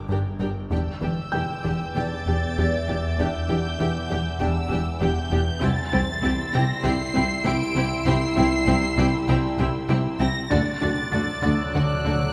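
Tense and ominous, this cinematic passage sets dark, woody violin sections carrying a high, lush melody and a textural layer over a rich, floating second violin line, soft-attack violas, intimate cellos and close double basses, with a resonant, overtone-sweeping synth drone treated with chorus, phaser and built-in reverb and a punchy, funky analog bass riff beneath, while mellow French horns hold sustained chords from 0.7 s, a felt-muted upright piano adds soft background color until 5.6 s, and articulate hard-mallet timpani play a fill from 10.5 s in a moderate scoring-stage reverb.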